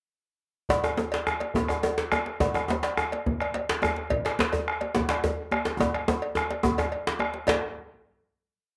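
West African traditional drum ensemble in a driving 12/8 at 142 BPM, with an earthy feel and a dry outdoor sound. A deep, distant bombo and a warm djembe keep evenly spread patterns under a metallic cowbell bell pattern, while a tight, cracking lead djembe with metal rattles sits up front playing lead phrases with soft hands. A drum fill runs from 5.8 to 7.5 seconds before the short piece closes on a final hit.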